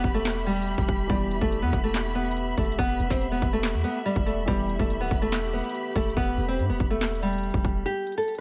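Menacing and eerie, this half-time trap hip hop excerpt sets an up-front, woody nylon-string guitar melody with tape echo and a low-pass filter over a dark, mellow baby grand piano in the background, lush bowed strings holding sustained chords, a deep, boomy 808-style bass and a trap kit with a hard-clipped kick, sharp snare, crisp hats, handclaps and rim clicks, all in a small room, until the kick drops out at 7.9 seconds.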